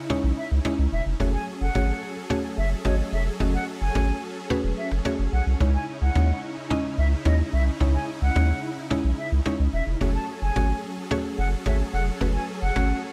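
Driving and confident, this dance-pop excerpt moves in a straight 4/4 over a short loop of minor add-nine chords. A round analog bass sits up front with a deep, nasal tone and fast attack, carrying the low end from the start. Huge, lush supersaw chords built from detuned sawtooth unison sustain underneath with an ensemble chorus, while a mallet-like synth pluck adds a woody, percussive sparkle with a touch of chorus, a noise layer and a short decay. A reedy concert flute carries the melody with an airy, straight tone, its tongued notes trailed by digital delay. The cajon stays close but in the background with faint snares, and the hi-hats drop out between 3.4 and 5.6 seconds before returning, all set in a light, small-room ambience.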